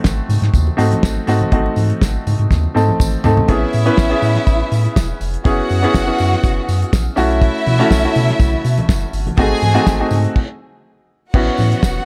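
A small, intimate room gives this glamorous, driving disco passage, cut from a longer piece, a close sound at 122 BPM in a straight 4/4. A damped 70s drum kit anchors the groove with a fat snare, tight kick and dark cymbals, joined by a jingly tambourine set back in the mix and very quiet, ringing congas played with soft hands. Underneath, a round sine sub bass sits deep and warm, while a clear, slightly worn grand piano with short sustain stays up front, accompanying through rich extended chords such as G#7b9, Amaj9 and B9sus4. After a drum fill, a lush studio violin section enters at 3.5 seconds as a second line, bowed with expressive vibrato; the congas drop out there and return at 7.7 seconds. A stop at 10.4 seconds breaks the momentum before the harmony settles on A6.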